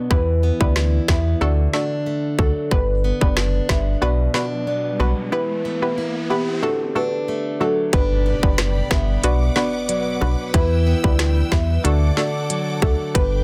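Bouncy and tough, this dancehall excerpt at 92 BPM cycles through Em, D, G and Bm. A tight, up-front electronic drum kit with woody snare and rim click and a deep, sine-toned sub bass with octave carry a mellow soft-mallet marimba melody with digital delay, boxy picked arpeggios on a plugged-in steel-string acoustic guitar with audible finger squeak, and a hollow, nasal square pluck thickened by chorus. A background electronic riser arrives at 4.4 s and hits an impact at 7.9 s, where lush bowed strings with sidechain pumping enter, joined at 8.4 s by very quiet, low-tuned bongos, all in a small room ambience with a dense, heavily limited master.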